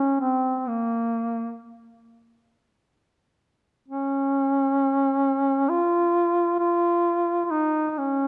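Mournful and solemn, this short excerpt of Caucasian folk music unfolds in a slow, rubato 3/4 at around 66 BPM, tuned to A4 = 436 Hz. A lone duduk carries everything, playing solo from the start to 8.3 seconds in a mellow voice set up front. Its line sits between Bb3 and F4, shaped with vibrato and a smooth top in a folk style. A moderate scoring-stage reverb, with a decay of 1.6 seconds, gives the reed a sense of space around it. The production leans dark and warm, suiting the grave, solemn character of this fragment cut from a longer piece.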